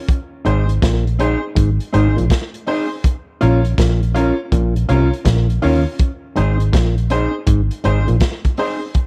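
Roots reggae at 81 BPM in 4/4, with a 16th-note swing, this short cut from a longer piece feels serious and meditative as it moves from Ab to Bbm at 3.0 seconds and back to Ab at 6.0 seconds. The crunchy breakbeat drum kit of hi-hat, kick and snare enters at 0.1 seconds, sitting up front with a gritty, saturated tone, a tight kick, a medium-tuned snare, a rolled-off top and slapback echo. Beneath it, the vintage muted fingered electric bass carries the low end with a dark, round, foam-muted sound that is the loudest part in the mix. A mellow electric guitar plays a dark, clean fingered accompaniment through tape echo, while a clear upright piano adds woody, worn, slightly detuned stabs. Low in range, an auto-wah clav drives a percussive, stringy riff with an envelope filter and overdrive through a combo amp. The whole piece has the dry, close sound of a 1970s-style studio recording.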